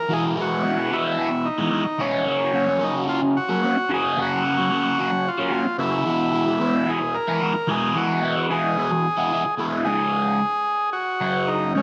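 A wet echo-chamber reverb casts a digital ambience over this short, trippy and hazy rock fragment, cut from a longer piece and moving in 7/8 at 221 BPM counted in eighths with a straight feel. Up front, a vintage, buzzy combo organ carries the melody through spring reverb and tape echo, while a crunchy, double-tracked electric guitar picks a warm overdriven riff through a phaser from 0.1 seconds. The harmony moves from E to Gb and back before a new section at 9.9 seconds shifts to Db5 and then Gb5.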